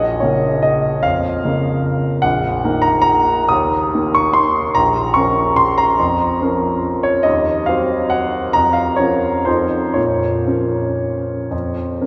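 A warm, present grand piano plays alone and up front through this 12.1-second excerpt of a classical waltz in 3/4, its rubato phrasing and long sustain carrying a bittersweet, nostalgic mood into a wet cathedral reverb.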